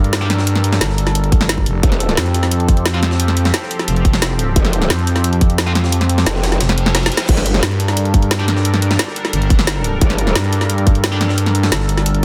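A tight, layered electronic kick drum drives this tense, aggressive slice of dark technical drum and bass in G minor at 176 BPM, entering at 1.3 seconds over a growling FM bass, a woody-snared kit with bright hats, a faint gritty, pitched-up jungle sampler-style kit, and a detuned sawtooth pad that pumps against the beat. A saturated, wobbling growl bass with a formant filter surges in bursts, its longest run spanning 4.6 to 7.6 seconds, while very quiet overdriven, double-tracked guitar stabs punctuate every two bars. Around 6.6 seconds the kick drops out as a background reverse cymbal and a drum fill lead back into the G minor chord at 7.3 seconds, all inside a dense, heavily limited master with light digital ambience.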